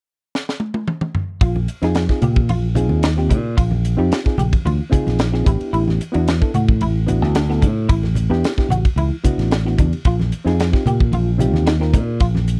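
A dry, close 1970s-style studio sound frames this bright, soaring excerpt of electric jazz fusion at 111 BPM in 4/4, opening with a drum fill from the crisp, polished kit, whose high-tuned snare and punchy kick sit up front alongside hi-hat, ride and toms. At 1.4 seconds the fingered electric bass enters up front with a warm, amped tone, together with clean, hollow-body semi-hollow guitar stabs treated with ensemble chorus, and they are soon joined by ringing, low-tuned congas in the background and reedy electric piano accompaniment. The harmony moves from Bb9sus4 to A9sus4 and then Bbsus4, giving the groove an open, suspended lift.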